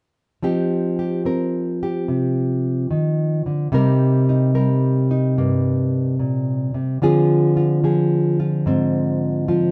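Solo jazz with a late-night, swinging mood at 73 BPM in 4/4, carried by a dark, full-bodied, fingerpicked nylon-string guitar with a deep classical tone, placed up front from 0.4 to 9.7 seconds. It moves through Fsus2, Cm7 and Dm7b5 in a moderate studio reverb with a live-room feel, a short fragment cut from a longer piece.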